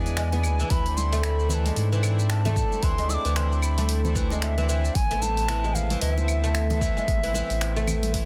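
A round, sine-like sub bass sits up front with tube saturation and sidechain pumping, anchoring this hypnotic, warm organic downtempo excerpt in 4/4 with swung sixteenths; a deep electronic kick enters at 0.7 s as the harmony moves from E7 to Dsus2 and then to Amadd9 at 5.0 s. Above it, a pure, tongued bamboo bansuri carries the melody through delay, while a woody, plectrum-plucked fretless oud plays arpeggios roughened by vintage 12-bit sampler grit, and a mellow, breathing pedal harmonium pumps softly underneath. Claves, finger snaps, hi-hat, shaker and a soft-clipped snare from a deep house kit mix with hard-handed bongos and congas in the background, all held close and dry in a dense, heavily limited modern master.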